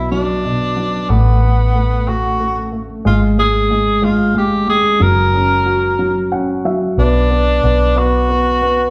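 A breathy tenor saxophone carries the melody in a jazz style, its soft attack, scooped notes and light vibrato giving this dramatic, melancholic pop ballad in a swaying six-eight metre a tender, aching voice. A dark concert grand piano sits up front beside it, its mellow chords and deep bass register filling out the accompaniment, while a vintage fingered electric bass, amped and foam-muted, adds round, punchy low notes underneath. The harmony moves from Bm through Asus2 and Fm/Ab to F#, and the piano steps forward with a fill from 6.0 to 7.0 seconds before the music turns to a new section that returns to Bm. The band plays together in one room, bathed in a lush, wet reverb of a large studio that lends the whole performance a spacious, intimate glow. This short passage is cut from a longer piece.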